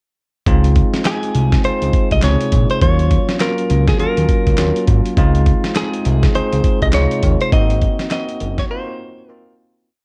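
A dusty, gritty sampler-style drum kit with a thumpy kick and snare layered with clap hits a hard-swung new jack swing beat at 102 BPM in Db major alongside a fat, detuned analog bass line with a moving notch and barky, bell-like electric piano chord stabs over Dbmaj7, Ebm7 and Ab7, while a clean, direct electric guitar with spring reverb enters at 1.1 seconds with flirty, bouncy hook phrases before the bass and drums drop out for a short break as the whole piece fades to its end at 9.9 seconds in a dark production.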